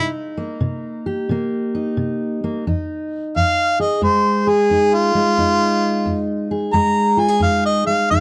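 A dry, close 1970s-style studio sound with a touch of reverb frames this mournful, soulful acoustic country blues at 88 BPM in swung 4/4 and F minor, tuned to A4 = 437 Hz, where an up-front harmonica carries a jazz-style solo throughout, full of light vibrato and scooped notes, over a warm fingerpicked dreadnought steel-string acoustic guitar that moves from Cm7 to Fm7 at 2.7 seconds in this brief cut from a longer piece.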